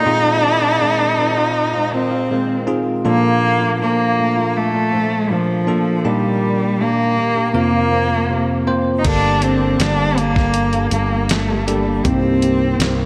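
A straight 4/4 pulse at 80 BPM carries this emotional, hopeful pop ballad fragment, where an up-front, nasal bowed cello sings the melody with vibrato, portamento and tape echo over a bright, bell-like tine electric piano and a dark, boxy flamenco guitar thumb-plucking arpeggios with finger squeak in the background, until at 9.0 s a growly, sustaining fretless electric bass and a gritty, compressed sampler-style soul drum kit with thumpy kick and fat snare join in, the mix dreamy and soaked in lush hall reverb.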